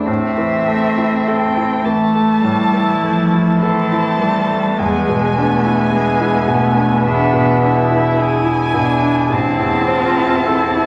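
Classical chamber music in a slow, romantic vein, this piano quartet movement unfolds with a warm, lyrical mood and a freely breathing rubato feel in 4/4. A bright concert grand piano sits up front with a brilliant, polished tone, deep bass and long sustain, carrying the accompaniment from the opening alongside the cello, whose rich second line is shaped with vibrato, soft attacks and expressive portamento. The violin takes the melody high in its range, singing with vibrato and gliding portamento, while the viola joins the accompaniment at 2.4 seconds, its soft-edged, distant voice adding an inner layer. The harmony moves from A minor to E7 and back to A minor at 9.3 seconds. The recital hall reverb lends a spacious, wet bloom, and a vinyl crackle gives the sound an aged patina in this brief passage cut from a longer piece.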